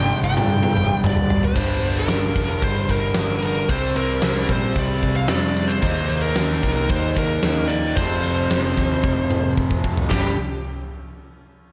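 Driving and menacing, this hard rock excerpt in G minor at 112 BPM sets a dark, high-gain lead guitar melody with slapback and tape echo over a bright, double-tracked, compressed riff guitar, a round hollow-body picked bass and a huge arena kit with punchy kick and fat snare that enters at 0.2 seconds and rolls into a fill at 9.0 seconds, the chords moving from Gm through C5, Eb5 and F5 inside a lush hall reverb for a big arena sound.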